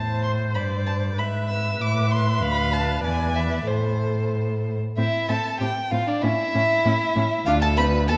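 A close, expressive first violin sings the melody with vibrato and portamento over a clear, focused second violin, a rich viola and an up-front, warm cello bass in this stormy, dramatic fragment of a quick classical-period string quartet movement in A minor at 96 BPM in 2/4, played with rubato and bathed in a dark concert-hall reverb.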